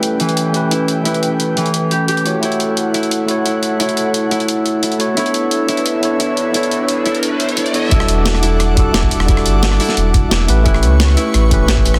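A straight 175 BPM breakbeat of gritty, pitched-up, tape-warm hi-hat, rim click and snare runs through this melancholic, rolling liquid drum and bass excerpt in E dorian from its first moment, where a clean tine electric piano with delay sits up front over an airy, breathy pad with chorus and sidechain pumping and a ringing, fingerpicked Celtic harp arpeggiating through low-pass filtering and digital delay, both pad and harp under filter sweeps, until a background riser at 6.5 seconds leads into the drop at 7.9 seconds, where a deep, mellow sine sub bass with octave and a knocking, layered electronic kick join the dense, heavily limited mix over chords moving from Em11 to A9.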